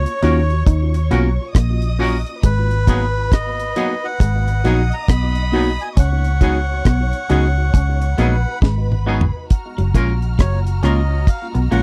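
Smooth and tender, this short lovers rock reggae excerpt sets a reedy, breathy melodica melody with tape echo over a dark, punchy muted bass and a dry, up-front drum kit with a high-tuned snare, while a worn tine electric piano with phaser, a bright twangy guitar with tremolo stabs, a compressed background guitar riff and distant, lush bowed strings fill out a close 1970s-style studio sound, a drum fill at 8.6 seconds leading into the closing chord.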